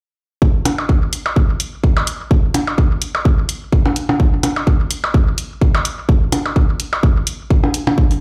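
Techno at 127 BPM in 4/4 with a light 16th-note swing, this sparse, cool passage is cut from a longer piece. A punchy, layered electronic kick drum sits up front from 0.4 seconds, joined at 0.7 seconds by an overdriven electronic hi-hat and gritty percussion blips that carry digital delay and a small-room tint. The whole groove sounds as if played on a big sound system in a bare room, with large studio reverb around it.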